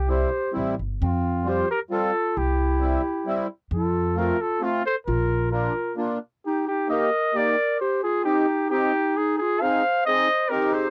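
Alpine folk dance band music in a bouncy, festive 3/4 at 132 BPM, cut from a longer piece, with a mellow, vintage trumpet carrying the melody up front, a dark clarinet on the second line, a reedy, sweet accordion with light tremolo tuning in accompaniment, and a woody pizzicato upright bass that drops out at 5.7 seconds, just before the move from Bb major to Eb major at 6.4 seconds, all in a dry, close 1970s-style studio sound.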